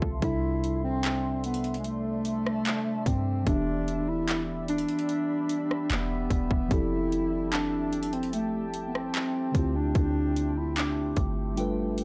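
A straight, unhurried trap beat in 4/4 anchors this tender, dreamy contemporary R&B passage, its overdriven kit of hard-clipped kick, metallic hi-hats, handclaps and rim clicks sitting up front. Beneath it, a boomy 808-style bass with a sine body, a noise layer and a fast, decaying attack fills the low end. A clean, mellow tine electric piano carries the accompaniment through chords moving from C6/9 to Em7, Fmaj9 and Dm11, while a deep, moody pad of detuned sawtooth and sine with a sub octave holds long, slow-blooming chords, softened by chorus and its own reverb. Entering at 0.2 seconds, a dark bass clarinet takes the lead with a jazz-style solo full of vibrato, up front in the mix yet sounding distant and roomy, colored by analog delay. A soft, pure FM synth bell drifts in the background, heard briefly at the start and again from 7.5 seconds, shimmering with chorus and delay. This gritty, dry hardware recording, cut from a longer piece, has a digital ambience.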